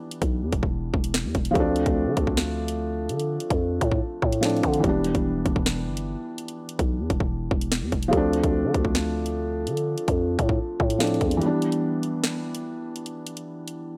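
A dry, gritty recording with transformer saturation and a digital ambience gives this tense, dark drill excerpt a hard, lo-fi edge. A felt-muted upright piano, placed up front and softened by a low-pass filter, carries the harmony with a mellow, intimate tone, its thick felt and audible action noise adding a close, hushed texture as it moves between Em7 and Dm7. The electronic drill kit sits in a half-time feel, pairing a hard-clipped kick with a sharp snare and bright hi-hats that push to the front of the mix. Beneath them, a growling 808-style bass with a buzzy, sine-based tone and fast attack decays after each note. At 11.4 seconds the bass drops out for a break and the kick falls silent until 12.2 seconds, briefly leaving the piano, snare and hats over Em7 before the kick returns for the final moments.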